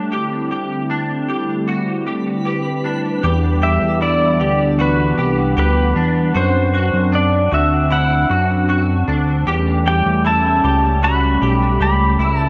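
Dream pop at 77 BPM in E minor, melancholic and hazy, opening on a hollow, flute-like pad holding sustained chords under clean, picked semi-hollow guitar arpeggios, both softened by chorus and a low-pass filter. A faint twinkling granular shimmer drifts in the background from 2.2 s, before a fat, saturated analog bass arrives at 3.2 s as the chords move through Em7, D7 and A7. From 3.6 s a twangy pedal steel guitar, played with fingerpicks and slide and touched by tape echo, carries the melody up front, all set in moderate plate reverb within a dark production cut from a longer piece.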